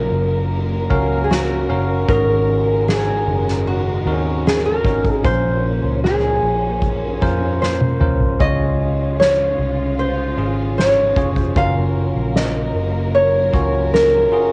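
A fingerpicked nylon-string guitar carries the melody in this heartfelt, emotional pop ballad, its small, warm tone sitting in the upper middle range over a slow 76 BPM pulse in 4/4 and Db major. Beneath it, a bell-like tine electric piano adds bright, clean accompaniment, while a studio string section holds lush, woody bowed chords with vibrato in the background. A vintage muted fingered electric bass gives a dark, round and punchy low end, and a soft-mallet drum kit enters at 0.1 seconds with a boomy kick, fat snare, toms and ride cymbal, all struck with mallets in a big-room sound, adding a fill between 7.6 and 8.4 seconds. The harmony moves from Gbmaj7 through Ab7sus4 and Bbmadd9 to Dbmaj7 before returning to Gbmaj7. The guitar, piano and strings carry plate reverb and cassette-tape character, the drums share the tape coloring, and the whole piece sits in a short, wet booth ambience with the intimacy of a home cassette recording, cut from a longer piece.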